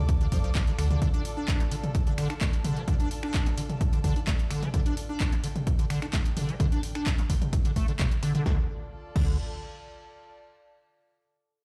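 Hypnotic, gritty acid house excerpt in which an up-front, tape-warm electronic kick and a punchy analog drum machine of snare, handclaps, finger snaps, hi-hat, toms and crash drive a squelchy, resonant acid bass riff colored by chorus, cassette tape and digital delay, while a deep, round analog bass pumps in the background at the start and again from 8.5 seconds, and a distant, floating bowed chamber string section, also pumping, fades out over the first 8.5 seconds, the mix sounding as if played through a big system in a bare, reverberant room.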